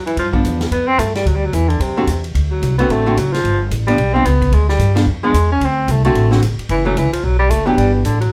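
A mellow baritone saxophone takes the solo from the very start, its vintage subtone sound carrying a gentle vibrato up front alongside a woody, pizzicato upright bass, while a swinging drum kit with dark cymbals and a boomy kick enters at 0.1 seconds and a clean, hollow-bodied archtop guitar adds picked accompaniment from 0.3 seconds. This sophisticated, playful small-group jazz excerpt swings at 221 BPM in D mixolydian, moving through G7, D7, G#dim7, F#m7 and Em7 changes. Moderate studio ambience places the group a little further back in the room across its brief 8.3 seconds.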